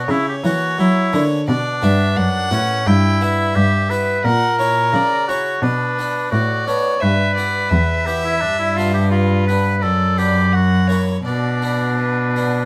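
A nasal, gut-stringed cello carries the bass line up front in this flowing, radiant baroque-style sonata movement with continuo, cut from a longer piece. Above it, a period-style violin with light vibrato sings the melody while a soft-attacked, roomy oboe weaves a second line. A brilliant, dry, close-miked harpsichord with three sets of strings fills in the accompaniment, all within a light reverb.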